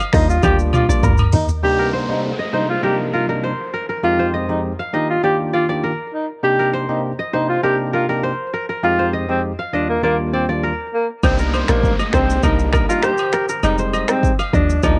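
Sultry and hypnotic, this afrobeats piece in C minor at 100 BPM sets an intimate, breathy tenor saxophone melody with cassette tape coloring over a bright, bell-like tine electric piano and a ringing, fingerpicked kora riff touched with tape echo. The round log drum bass and an electronic afro-pop drum kit with metallic hats and a drum fill from 0.4 s drop out at 1.6 s, after the background agogo bells and woodblock have already fallen away at 1.3 s. An electronic downlifter joins the saxophone, electric piano and kora from 1.6 to 6.4 s, and the groove returns at 11.2 s with the downlifter alongside it.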